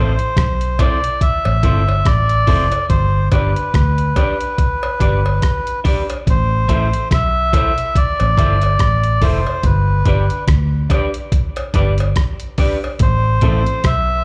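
Heard through a venue's PA at a live gig, this fairly dry, club-sounding slice of roots reggae is cut from a longer piece and moves at a laid-back, hypnotic 71 BPM in 4/4 with a swung sixteenth feel, in A minor. Up front, a reedy, breathy melodica with a nasal, wooden-bodied, band-limited vintage tone carries the melody, treated with tape echo and slapback echo. Beneath it, a round, dark, foam-muted fingered electric bass sits forward in the mix, while a dusty sampler-style kit adds compressed, gritty hi-hat, rim click and a thumpy kick from 0.2 seconds. An electric guitar through a small old amp, picked and slightly broken-up with a lo-fi edge and the same tape and slapback echoes, plays accompaniment, and a warm concert grand piano with deep bass adds stabs in the background through slapback echo. An acoustic, small-room cowbell joins at 0.8 seconds, also in the background with slapback echo, as the harmony rocks between Am and G over two sections, settling back on Am at 13.0 seconds.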